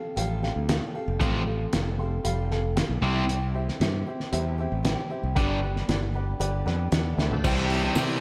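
A dark, woody upright piano and a bright, finger-squeaking acoustic guitar, both touched with slapback echo, open this confident, sunny classic rock excerpt before a growling, overdriven bass and a muffled, thuddy drum kit with a fat snare push up front; two overdriven electric guitars, one cranked and bright, the other sludgy and set back, take up the riff at 1.2 seconds as the piano adds a fill, and a very quiet, shouting tonewheel organ with slow rotary speaker and a jingly tambourine slip in near the close around a drum fill at 7.2 seconds, the whole band ringing in a big arena sound with recital-hall reverb.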